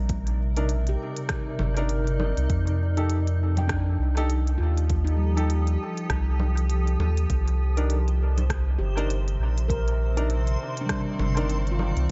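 Swung sixteenths at 100 BPM in 4/4 carry this deep, hazy ambient dub excerpt in C dorian, where a produced, deep electronic kick and a crisp-hatted kit of congas, hi-hat and rim click sit in studio reverb with dub echo on the kit, under a round, up-front soft sub bass, a cloudy, evolving granular pad holding Cm9 and F7 chords, mellow ringing handpan arpeggios and woody, slightly detuned upright piano stabs, both trailed by dub echo, and at 8.1 s a dreamy reversed texture swells in on a single high C.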